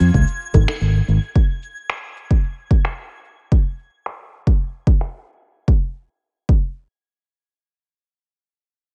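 A smooth, relaxed sunset chillout excerpt at 111 BPM in 4/4 opens with a punchy, chorus-lush fretless electric bass that stops at 1.2 seconds, alongside a faint, bright granular texture twinkling high with an octave-up shimmer and built-in reverb. Filtered electronic cabasa and finger snaps run under a filter sweep until 5.7 seconds, while an up-front, layered electronic kick drives on to 6.7 seconds. Tight, high-tuned acoustic bongos come in briefly near the start, all in a dry mix.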